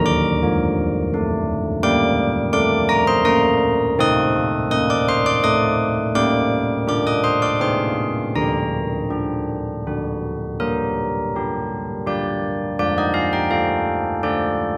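Set in a straight, unhurried three-beat metre, this short classical tune for church bells moves with a wintry, solemn gravity. A solo carillon carries the whole passage, its bronze bells ringing up front with a dark, smooth tone and a distinctive minor-third overtone coloring each strike of the iron clapper. The part spans a broad register, from low, weighty notes up to high, bell-like tones, and the harmony shifts through minor and diminished colors before settling on a major chord just before 10.6 seconds, where a second section begins. Close, detailed microphones capture the bells intimately, with light reverb lending a modest sense of space. Cut from a longer piece, the passage stops at 14.8 seconds.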